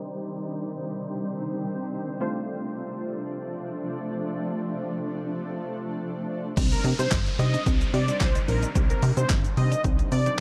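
A dark, digitally spacious production frames this energetic, driving dance-pop excerpt in a straight four-four. It opens with a funky, detuned polysynth comp and a shimmering, ethereal pad whose octave-up sparkle and built-in reverb hang over a filter sweep, both parts pumping against the sidechain as the chords move from Cmadd9 to Dm7. At 6.6 seconds the drop arrives. A punchy deep house kit sits up front with a fat snare, handclaps, hi-hat, shaker and crash, while a plucky, wave-folded analog bass pushes the groove with a funky bite. Moments later a smooth, evolving supersaw carries the melody. Beneath it, a clean, twangy twelve-string electric guitar riff stays in the background with analog chorus, and an electronic downlifter adds motion to the drop.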